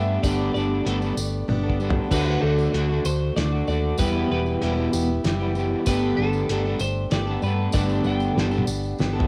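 A dry, lo-fi home cassette recording opens this short, jangly slice of folk rock and heartland rock, moving at 96 BPM in a straight 3/4 in G major through Gadd9, D and Em. A bright, compressed twelve-string electric guitar carries the melody over a boxy, picked plugged-in acoustic guitar and a twangy, slightly broken-up electric guitar riff treated with harmonic tremolo and cassette tape. A round, punchy hollow-body bass with tube saturation sits up front beside a cloth-damped, thuddy drum kit with a fat snare and dark cymbals, which enters at 0.2 s and plays fills at 1.5 s and 8.4 s, while a distant, jingly tambourine adds shimmer.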